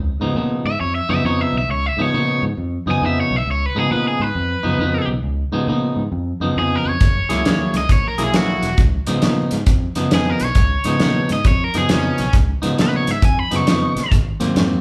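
A band playing live in one room fills a large studio with a moderate reverb, giving this laid-back, gritty electric blues shuffle an open, lived-in sound. At 135 BPM in 4/4 with a 65% swing on the eighths, it sits in Db mixolydian and moves from Db9 to Gb9 and back, then reaches Ab9 at 14.1 seconds as this cut-off stretch of a longer piece ends. A round fingered electric bass anchors the low end, while a twangy, scooped clean electric guitar plays the riff up front with a picked attack. Over them, an overdriven electric guitar carries the melody, bright and compressed. The warm soul drum kit enters at 7.0 seconds with hi-hat, a tight kick and a medium-tuned snare, its small-room sound and rolled-off top sitting up front in the mix.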